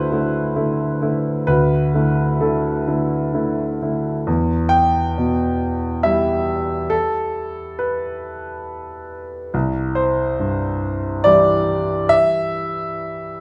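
A solo grand piano, present and polished with long sustain and light reverb, opens on a Dsus2 chord before settling into E minor at 4.3 seconds and moving to C at 9.5 seconds, shaping an intimate, wistful neoclassical minimalist passage in a rubato triple metre that ranges from C2 up to G5 in this short cut from a longer piece.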